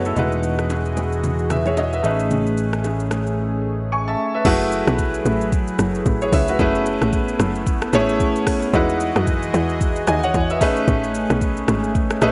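A clear, worn grand piano sits up front with long sustain, laying soulful, deep amapiano chords in F# dorian over a swung 112 BPM groove, while a smooth, detuned sawtooth pad with chorus pumps softly beneath it through the whole excerpt. A growly, amped fingered electric bass and bright vintage congas and bongos open the excerpt alongside an electronic drum kit with a deep kick and metallic hats, until the drums mute at 3.4 seconds and the drop arrives at 4.5 seconds. From there a tight, punchy FM log drum bass with a noise layer and a fast, decaying attack carries the low end, all bathed in a dreamy, reverb-soaked hall.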